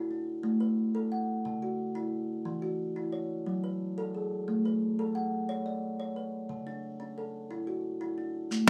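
Up-front kalimba arpeggios, woody, hollow and ringing under the thumb, spin a hypnotic southern African traditional mbira-style interlocking cycle at 119 BPM in a straight 12/8, circling F#m and C#m harmonies in a small, lightly reverberant room, until a grainy, dry shekere slips in at 8.5 seconds just as this excerpt of a longer piece cuts off.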